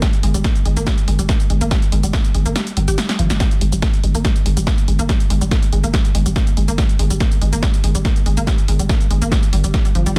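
A dense, heavily limited modern master in a digital ambience opens onto driving peak-time techno at 142 BPM in G phrygian, its industrial mood carried by an up-front, punchy electronic kick and a tape-warm analog drum machine with hi-hat, shaker and snare, the hats and percussion pumping against the sidechain. A growling, buzzy 808-style bass sits on G1 with tube saturation and a low-pass filter, entering at 0.2 s, while a squelchy, detuned blip pluck plays a bright riff between F3 and G4 through chorus, sidechain pumping and tape echo. The kick drops out from 2.6 to 3.4 s, with a drum fill at 3.1 s before it returns in this cut from a longer piece.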